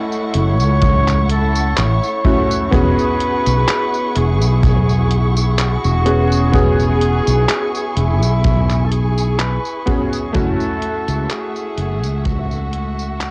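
Dreamy and nostalgic, this slow 63 BPM vaporwave excerpt in E major drifts over F#m7 and E69 chords, with a distant, roomy flugelhorn carrying the melody through tape echo and plate reverb above a chorused, clangy electric grand piano and a lush, far-off bowed string section rich in vibrato and portamento, while a growly, up-front fretless bass with ensemble chorus enters at 0.3 seconds, a gritty, detuned 8-bit drum machine supplies handclaps, hi-hat and tambourine, a big, boomy kick adds weight, and the cassette-worn home recording fades out from 7.8 seconds.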